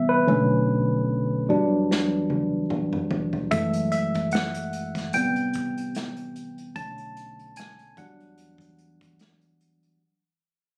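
Captured on a phone in a nearly dry room, this sultry, smooth neo-soul R&B fragment, cut from a longer piece and fading out throughout, features a barky, clean tine electric piano through a combo amp up front, soloing over lightly swung Bm9, Em9, F#m9 and Am9 chords, with a woody, thumpy pizzicato upright bass underneath and an unplugged small-room kit played with bundle sticks, its punchy kick and medium-tuned snare arriving at 1.9 s with a fill that runs until 3.5 s.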